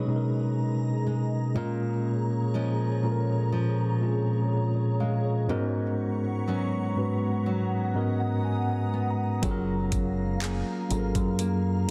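A mellow tine electric piano, a dark, fingerpicked nylon-string guitar in arpeggios and a glassy, ethereal FM pad treated with ensemble chorus, built-in reverb and phaser open this smooth, romantic contemporary R&B fragment together at a slow 61 BPM, moving through B6, A#m7 and G#m11 as the piano plays a fill from 7.5 seconds, before a round, dark picked electric bass and an electronic drum kit with a knocking kick, metallic hats and handclaps enter on F#maj9 at 9.4 seconds, all set in light digital ambience with a dense, heavily limited modern master.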